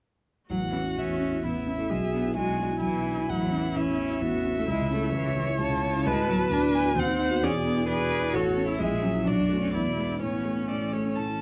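Lively and graceful, this quick classical-period movement for piano quartet moves at 130 BPM in 3/4 in A major, tuned slightly low at A4 = 437 Hz, and is cut from a longer piece. All four players begin together at 0.5 s, with the clear, focused violin carrying the melody in a close, vibrato-laden voice. Beneath it, the cello sings a smooth, even second line from a more distant position, while the viola adds expressive accompaniment marked by vibrato and portamento. The concert grand sits up front with a dark, mellow, intimate tone, deep bass, audible action noise and a vintage character. The harmony moves through a dominant seventh over B, a D-sharp minor sixth and an F-sharp seventh over A-sharp before settling back on A at 10.2 s, all heard in a moderate studio reverb within a dark, warm production.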